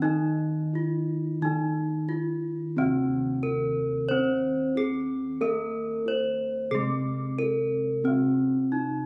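A bright, up-front bronze metallophone struck with a horn mallet carries the melody of this serene, ceremonial Javanese gamelan piece, set in Eb pelog barang at 91 BPM in a straight 4/4. Beneath it, a second ringing metallophone played with a wooden mallet gives an airy, equally close accompaniment an octave lower, while round, beating bossed gongs hold the bass, all three sounding throughout this 9.1-second fragment cut from a longer piece. The music shifts into a new section at 2.8 seconds, heard through the reverberant wash of a recital hall on a phone recording, with club ambience in the background.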